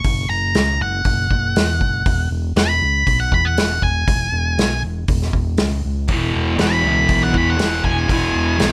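Lightly reverberant and punchy, this swaggering, rowdy garage rock excerpt sets a dark, octave-fuzz lead guitar melody up front over a round, overdriven fingered electric bass and a vintage acoustic drum kit with a pumping small-room sound, punchy kick and rolled-off top, as the harmony shifts from F# to E, before a thick, double-tracked fuzz guitar riff comes in at 6.1 seconds.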